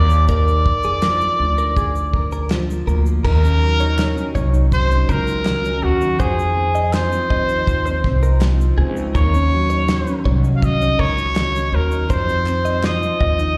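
A clear trumpet with light vibrato carries the wistful, reflective melody of this acoustic pop piece at 81 BPM from the opening, over a full-bodied, fingerpicked jumbo steel-string guitar with audible finger squeak, woody, thumpy pizzicato upright bass, a background clean electric guitar playing phased, delayed arpeggios and a cloth-damped, thuddy drum kit with dark cymbals and shaker, while crisp group handclaps join at 1.0 s and the music settles into Eb dorian at 3.2 s, all captured live through a venue's PA in a recital hall.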